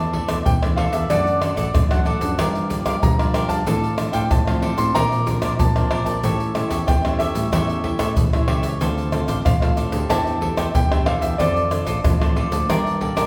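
Bittersweet yet lively, this short samba and choro excerpt sets a smooth, vintage-toned grand piano melody over a crisp, bright picked cavaquinho and a full-bodied fingerpicked nylon-string guitar sitting in the background, with a direct fingered electric bass underneath. A percussion section of tight surdo, pandeiro, egg shaker and tamborim enters at 0.1 seconds, played with hard hands and placed up front with a small-room character. The band plays live together in one room, bathed in a wet large studio reverb, as the minor-key harmony drifts through suspended and seventh chords.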